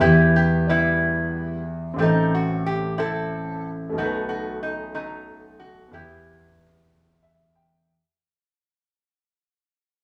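A slow, solemn 6/8 gospel sway carries this fervent fragment of a longer piece, which fades out across its whole length. Up front, a metal-body resonator slide guitar, played with fingerpicks, sings the melody with a metallic, nasal bite, while an intimate grand piano with audible action noise supplies the accompaniment. The guitar drops out at 7.2 seconds and the piano closes with a short fill from 6.9 seconds, all set in a wet studio reverb that suggests a band playing live in one room.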